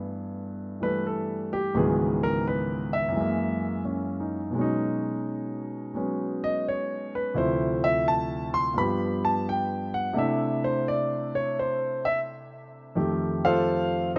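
The recording has a rough, home-demo quality, with the piano set up front inside a lush hall reverb that lends a long, roomy tail. This is a short solo jazz passage cut from a longer piece, played entirely on a concert grand piano from 0.0 to 14.2 seconds. The instrument sounds natural and warm, with a deep bass reaching down to C#2 and the upper range extending to C6. The mood is warm and swinging, in 4/4 with a swung eighth-note feel. The harmony moves through rich extended chords, from G6/9 and C#m11 through Dm9 and G7 to C6/9, closing on F9 at 13.0 seconds.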